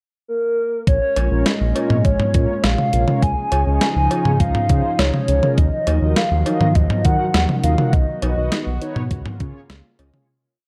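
Nostalgic and bright, this short synth-pop piece opens with a hollow, woody clarinet-like synth lead singing a warbling, vibrato-tinged motif on its own from 0.3 s. At 0.9 s a thumpy, sampler-style 12-bit drum machine with syncopated toms and cowbell joins, along with a round, deep sequenced analog bass and a lush, thick unison pad in the background. From 1.2 s mellow, brassy synth brass adds off-beat triad chords, all within a dark, warm production with light reverb that fades out from 7.9 s.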